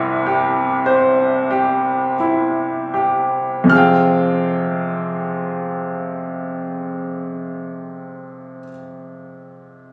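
Played with a free rubato feel in 4/4, this wistful, melancholic fragment of a lyrical classical solo piano piece eases to a slower pace over its opening 3.7 seconds on a C chord before settling onto an Fmadd9 harmony. The upright piano sounds bright, woody and up front, its long sustain ringing across a range from deep bass to high treble. Captured on a phone in the room, the sound carries a light touch of reverb and some compression.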